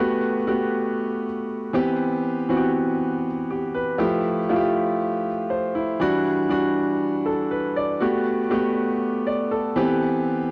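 A home cassette recording with a rolled-off top end and a small, lightly reverberant room frames a solo concert grand piano that sounds clear, intimate and boxy, sitting up front with audible action noise and deep bass. In this celebratory, glamorous disco cut from a longer piece, the piano moves at 119 BPM in straight 4/4 in G major, spanning E3 to D5 across 10.5 seconds. Its chords run Gmaj9, Cmaj7, Fmaj9 and Em9 before returning to Gmaj9 and Cmaj7.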